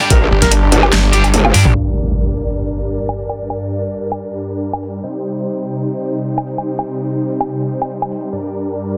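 A dense, heavily limited mix with light reverb opens this menacing, half-time wobble dubstep fragment in G minor at 146 BPM, where a brief drop stacks a growling, wobbling bass and a snarling distorted saw bass over a knocking electronic kick, a dubstep kit with a huge snare and metallic hats, bright double-tracked guitar stabs, and a soft, felt-muted upright piano melody carrying tape echo and audible action noise. The kick drops out at 0.9 seconds before a drum fill, and at 1.7 seconds an electronic impact hits as the lush, detuned supersaw chords, pumping through a phaser and low-pass filter, carry on under a long filter sweep, moving from G5 to Cm and Gm until 9.0 seconds.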